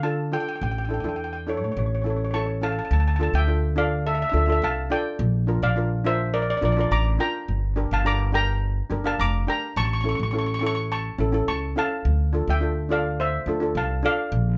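Calypso in D minor at 105 BPM, brooding and bittersweet, in which a shimmering lead steel pan struck with hard rubber sticks carries the melody up front over a bright, airy double-seconds pan accompaniment and a woody, thumpy pizzicato upright bass on gut strings, all in a close, detailed recording with light reverb, moving through Dm, Asus4 and A before settling into Dmadd9, Bb, Gm, A and Dm7 in this short excerpt cut from a longer piece.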